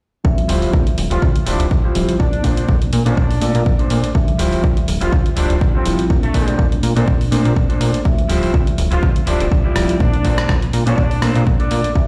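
Sensual and groovy, this filtered disco house excerpt moves at 123 BPM in D minor with a light swing on the sixteenths, cycling between Dm11 and Bbmaj9 every two seconds or so while a filter sweep runs across its whole length. A punchy, tape-kissed electronic kick sits up front, joined by a gritty, compressed sampler-style kit of hi-hat and rim click from 0.4 seconds and a barely audible close, dry tube shaker. Underneath, a plucky analog bass with a fast, decaying sawtooth-and-square attack pumps against the kick through its own low-pass filter. A reedy, mellow electric piano with phaser sits in the background, while a twangy, fingered guitar at the edge of break-up plays a riff carrying 12-bit sampler grit. From 1.1 to 11.2 seconds a tight, distant horn section with light vibrato carries the melody, roughened by the same sampler grit and trailed by digital delay, all heard as if played on a big sound system in a bare stone room.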